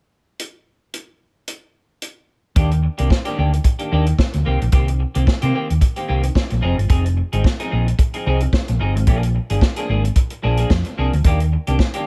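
A small-room, up-front disco excerpt in Eb major at 111 BPM with a lightly swung sixteenth feel, celebratory and joyful, opens with a vintage drum kit alone (punchy kick, medium-tuned snare, hi-hat, rolled-off top, gated reverb) before a dark, round hollow-body fingered bass and a clean, picked semi-hollow electric guitar with subtle chorus enter at 2.6 seconds over Ebmaj7, Cm7, Fm7 and Bb7 chords.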